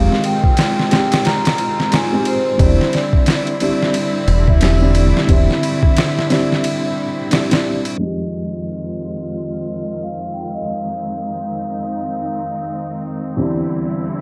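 Trip hop at 89 BPM in F dorian, hypnotic and brooding, with a swung 16th-note feel over chords moving between Fm7 and Cadd9/E in this short cut from a longer piece. A felt-muted upright piano with audible action noise, harmonic tremolo and tape echo carries the accompaniment beneath veiled, con sordino strings holding distant sustained chords, while a soft-mallet vibraphone rings out a mellow melody through dub echo until 13.0 seconds. Up front, a round, dark fingered bass sounds until 5.5 seconds, and a gritty, pitched-down sampler kit with thumpy kick, snare and ride plays in a small room until 8.0 seconds, when a filter sweep runs through the second section, all beneath vinyl crackle and a low-pass haze.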